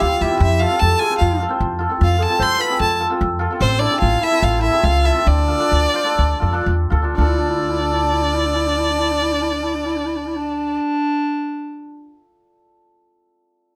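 Klezmer excerpt in D minor, soulful and festive, moving in straight 4/4 at 112-150 BPM and slowing between 3.6 and 7.2 seconds over F, Am and Dm chords, with a clear, focused bowed violin carrying the vibrato-rich melody up front, a mellow, distant classical-style clarinet singing the second line and lingering until 12.2 seconds, a shimmering, ringing hammered cimbalom accompanying, and a woody, dark pizzicato upright bass, all set in a small room with moderate reverb.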